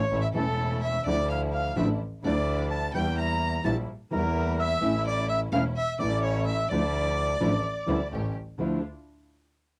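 Sultry and melancholic, this short tango excerpt moves at 128 BPM in 4/4 with a rubato feel in D minor, its cassette-recorded home sound set in a small booth. A dark, reedy bandoneon carries the melody over a clear, smooth violin second line, while a biting, earthy bowed double bass sits up front with an airy bow and light vibrato. A thumb-plucked nylon-string guitar with fresh strings joins at 0.3 seconds as close accompaniment, and a studio string section adds expressive stabs with portamento in the background, through chords such as Dmadd9, Edim and A7.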